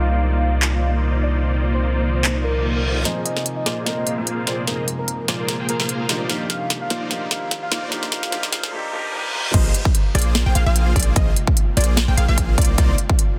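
A huge, thick supersaw riff runs through this dreamy, bittersweet future bass cut from a longer piece, running at 148 BPM in a swung half-time feel with a velvety synth lead carrying the melody over felt-muted upright piano, an ethereal pad in the background, and a deep sine 808 that sounds at the start before dropping out. A build-up from 3.1 seconds brings a trap kit drum fill with sharp, overdriven snare and crisp hats, filter sweeps on the supersaw and pad, and a very quiet reverse cymbal and riser, while the synths and piano pulse with sidechain pumping. At 9.5 seconds the drop lands with a punchy, tape-warm electronic kick, the returning 808, and lush unison pluck arpeggios with dub echo, all in a dense, heavily limited modern master.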